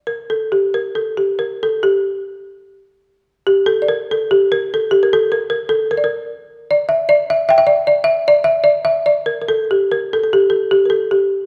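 This Japanese traditional chamber piece is a short fragment of a longer work, carried by a lone folk marimba from 0.0 to 11.5 s. The mood is still and austere, moving in a free, rubato 4/4 at roughly 67-78 BPM in G kumoi. Struck with medium hard mallets on hardwood bars, the marimba has a woody, dark and rustic tone, sitting up front and spanning G4 to G5. A moderate recital hall reverb, like that of a church or concert hall, gives each note a gentle halo while the music keeps its spare, austere character.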